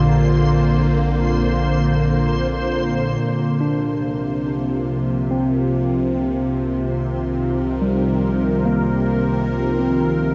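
Spacious, reflective ambient in free time, cut from a longer piece: a bright, morphing detuned wavetable pad with phaser sits up front holding sustained chords that move from Bbadd9 to Cm7 at 3.2 s, while a gritty, barky overdriven tine electric piano plays arpeggios through a combo amp with a diffuse delay, a round sine sub bass anchors the low end, a reversed, dreamy granular texture hovers high and fades in from 3.2 s, and a tense, string-like bowed drone with vibrato enters in the background at 4.1 s, all bathed in a huge, dark reverb.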